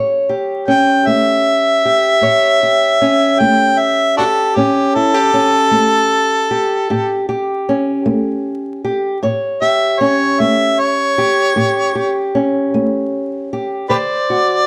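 Vinyl crackle sits over a moderate studio reverb, giving this short acoustic country blues cut a lived-in, old-record sound. A fingerpicked, ladder-braced acoustic guitar opens alone, up front with a dark, woody, boxy tone from its old strings, rolling through a slow, soulful 12/8 feel. At 0.7 seconds a warm harmonica joins, also up front and carrying the melody with vibrato, tongue slaps and scooped notes in a jazz-tinged style. The harmony rests on A7 for most of the passage before moving to D7 at 13.9 seconds. The mood stays laid-back and unhurried, with the harmonica sitting clearly above the guitar's accompaniment.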